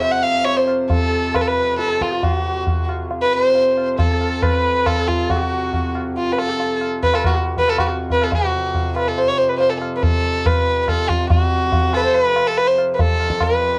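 Set in a straight 7/4 at 139 BPM and gradually speeding up, this radiant, devotional Hindustani classical excerpt rides on high-tuned, ringing tabla heard close and dry beneath a reedy, breathing pedal harmonium drone. Up front, a single bowed violin carries the melody with a soft attack, airy sul tasto tone and light vibrato, while a very quiet sarangi traces a smooth, gliding second line with portamento and sympathetic-string shimmer until about 8.4 s. Light reverb surrounds the parts, and the whole recording has the worn, warbly pitch drift of old cassette tape.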